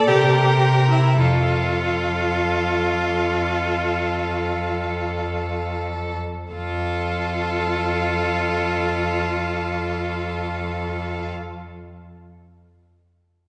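All four strings sound together from the opening: a distant melody violin sits in the background above a smooth second violin, while a clear, airy-bowed viola and an intense, rich cello stand up front, each a single bowed player with vibrato. This tender, lyrical slow movement for string quartet flows in free time, slowing down through its first 6.5 seconds before a new passage begins. It is cut from a longer piece and bathed in the lingering reverb of a concert hall heard from further back in the room.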